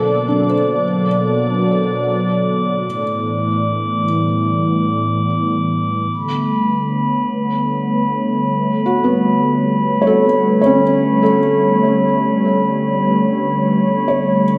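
Ambient music in free time, serene and weightless, heard as a section cut from a longer piece and tuned to A4 = 435 Hz, moving through Bm7, A9sus4 and Gmaj9/D. An up-front warm analog pad of detuned sawtooth tone holds soft-edged, chorused chords while a felt-muted upright piano plays boxy, intimate arpeggios with audible action noise and tape echo, and a glassy, ethereal glass harmonica adds a texture of beating tones. A very quiet, organ-like sine drone sustains beneath, fading out gradually from the very start until it stops at 6.2 seconds, all set in the lush reverb of a scoring stage.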